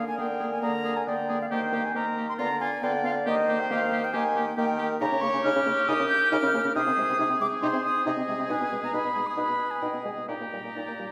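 A wind quintet starts together in a quick, lively and cheerful classical-period movement in Eb major, at 137 BPM in 4/4 with a rubato feel, tuned slightly below standard pitch. The concert flute carries the melody high above the group with a pure, straight, tongued tone, while the oboe sings a second line in a narrow middle range. The clarinet and French horn fill in the accompaniment, the clarinet sounding distant and roomy and the horn smooth at the top, and the bassoon anchors the bass. Both the oboe and the bassoon play with a light vibrato. The harmony moves from Bb7/D through Eb, Ddim7 and a rootless Eb7/Db, then darkens from Ab/C to Abm/Cb before settling on Eb/Bb near 10.3 seconds. A wet recital-hall reverb surrounds the ensemble in this short excerpt cut from a longer piece, which runs about 11.1 seconds.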